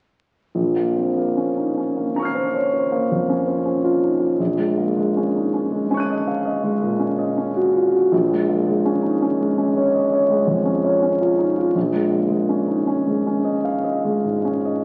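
Crackling like a very old 78 rpm record and bathed in moderate recital hall reverb, this mysterious, hazy fragment of impressionist classical solo piano, cut from a longer piece, has a smooth, vintage grand piano sitting up front from 0.5 to 14.8 seconds, drifting in rubato through uneven beats of 5/4 at 80 BPM in Bb minor over chords moving from Bbmadd9 to Gb69/Bb to Bbm7.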